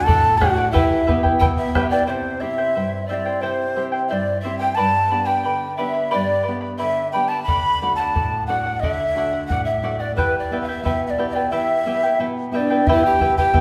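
Melancholic yet festive, this Andean folk piece in E minor moves at 89 BPM in a straight 2/4. An up-front, woody large quena carries the melody with a crisp, chiffy attack and straight tone, while a breathy bamboo pan flute with vibrato sits in the background on a second line over fingerpicked, shimmering charango with double strings and a classical nylon-string guitar whose finger squeaks are audible. A round bombo plays from 0.1 to 1.9 seconds and returns at 7.5 seconds, all set in a wet recital hall as the chords move through C, G, D and Em in this segment of a longer piece.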